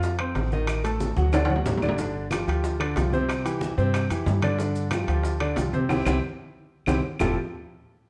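A natural-sounding baby grand piano with short sustain sits up front in this sunny, danceable Afro-Cuban jazz in F major, moving at 184 BPM in a straight 4/4, beside a woody pizzicato upright bass on steel strings. Behind them sit thick-skinned, low-tuned congas and distant claves in the background, tight, high-tuned bongos that are very quiet and saturated, ringing metal-shell timbales, and grainy, mellow maracas; the claves and timbales join at 0.2 s. A drum fill lands at 1.2 s and a band accent arrives at 5.9 s, all wrapped in moderate large-studio reverb and the warbling pitch drift of worn cassette tape.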